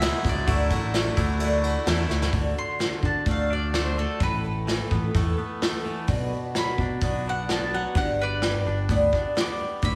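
Folk rock and heartland rock with an open-road, nostalgic mood at 128 BPM in D major, cut from a longer piece, where a round, double-strung mandolin carries the melody and takes a solo from 2.3 seconds over chords moving through D, Asus2, Bm and G. A shimmering, octave-doubled twelve-string acoustic guitar and a twangy, scooped electric guitar riff both carry slapback echo, while a punchy fingered electric bass plays beneath a soft brush drum kit with a tight kick that sits up front. A very quiet grand piano adds a fill before dropping out at 2.3 seconds alongside a reedy, mellow accordion, all within a lush hall reverb that gives a big arena sound.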